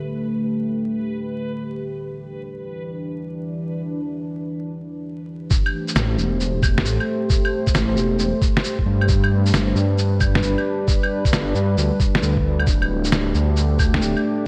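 A wistful, nocturnal future garage excerpt in A minor moves at 134 BPM with a 66% 16th-note swing, opening on a deep, moody ambient pad that holds sustained chords through chorus, reverb and sidechain pumping while a reversed, granular texture glimmers brightly on a single high note until 5.5 seconds. At that point the drums arrive: a muffled, thumpy kick pitched down and re-recorded in a small room, joined by shaker, claves and a fat snare, all sampler-style, compressed and tape-softened under low-pass filtering. A dark detuned saw bass enters at 6.0 seconds, a rumbling, beating unison tone that sits mellow yet up front in the lowest register. The harmony drifts from Dsus4 and Em7 into Am7, G and back to Dsus4. Vinyl crackle and a light digital ambience hang over the whole mix, lending it a worn, late-night haze.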